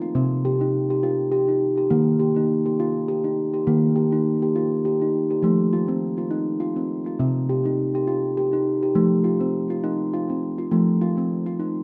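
A close-miked steel tongue drum sits up front in a wet echo-chamber room, its round, ringing tones carrying tape echo. This calm, meditative world piece moves at 102 BPM in a gently swung 3/4. Played solo with rubber mallets from 0.0 to 11.8 seconds, the drum spans C3 to G4 and drifts through Cm, Eb and F in this short cut from a longer work.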